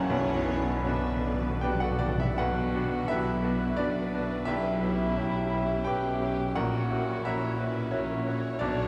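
A rubato 3/4 pulse sways at roughly 78-89 BPM in this passionate, brooding romantic movement for piano and orchestra in B minor, a short passage cut from a longer piece. A bright, brilliant baby grand piano sits up front carrying the melody across a broad span from F#1 to G5, while a very quiet, distant violin section also carries the melody with smooth, even vibrato. Around them, second lines come from a clear cor anglais, an airy, hollow silver flute in the background, a second lush violin section and a mellow clarinet entering at 0.1 seconds. A soft-attacked viola section and a mellow bassoon, heard only until 2.0 seconds, fill in the accompaniment, French horns hold very quiet sustained chords, and bowed cellos and double basses anchor the bass between A# and B. Close, dry timpani with medium mallets play a fill from 0.1 to 2.4 seconds on B2 and return briefly at 8.6 seconds, as the harmony moves from Bm through C#m7b5/B to F#7/A#. 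A long, wet cathedral reverb wraps the whole ensemble in the resonance of a church or concert hall.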